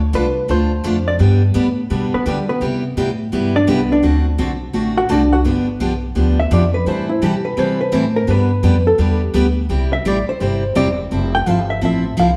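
Recorded live in one room, this brief cut from a longer western swing piece rings out in a stony room reverb, giving its down-home, swinging country feel an airy, echoing glow. A hollow-body electric jazz guitar takes the solo throughout, its fingered tone dark, clean and compressed. Up front with it, a woody pizzicato upright bass anchors the low end while a bright, full-bodied dreadnought acoustic guitar picks out the accompaniment through chords moving from Dm and G to Cmaj7, D7 and Fmaj7.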